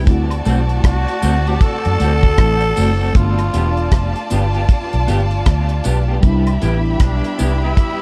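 A lovers rock reggae groove at 78 BPM in 4/4, with a gentle swing on the sixteenths, sets a romantic, sweet mood in this short excerpt from a longer piece. The dry, up-front drum kit, with its tight kick, hi-hat, rim click and rolled-off top, sits alongside a dark, round, foam-muted fingered electric bass that carries the low end. A growling tenor saxophone enters at 0.8 seconds with a raspy, gritty melody touched with light vibrato and tape echo. A bowed violin section adds an expressive, lush second line, while a clean, picked semi-hollow electric guitar plays stabs through chorus and tape echo. In the background, a dreamy FM electric piano with a soft pad layer shimmers with chorus and tremolo, and a close woodblock and tambourine add quiet texture. The harmony moves from D7 to G7 at 3.2 seconds and settles on Cmaj7 at 6.2 seconds, all within a dark, warm production that has little reverb.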